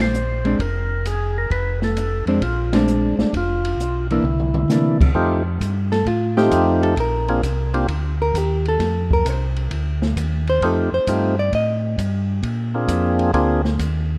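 A rough home-demo sound with light reverb and small-room ambience frames this bluesy, greasy soul jazz organ trio excerpt, swinging in 4/4 at 132 BPM in F mixolydian. A percussive tonewheel organ with key click and slow rotary speaker carries the melody while a mellow, round second organ supplies the bass, and an open, acoustic drum kit with dark cymbals and a boomy kick hits a band accent and a short fill. A clean, picked hollow-body electric guitar comps before taking a solo from 5.2 seconds, with the lead organ dropping out at 7.9 seconds and returning at 10.6 seconds.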